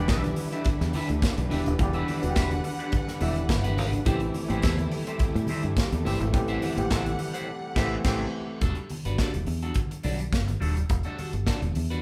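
Danceable and sultry, this disco excerpt in E minor at 106 BPM sets a punchy, foam-muted fingered bass and an up-front, tight-kicked acoustic drum kit under a slightly broken-up, scooped electric guitar with phaser, clear but worn grand piano and lush, vibrato-rich bowed strings on Em7 and Am7, with low-tuned congas and a jingly, band-limited tambourine very quiet in the background, before a band accent at 7.5 seconds leads to an Em11 at 8.6 seconds, where the piano and strings stop and the bass, drums, guitar and congas carry on in a moderate large studio reverb.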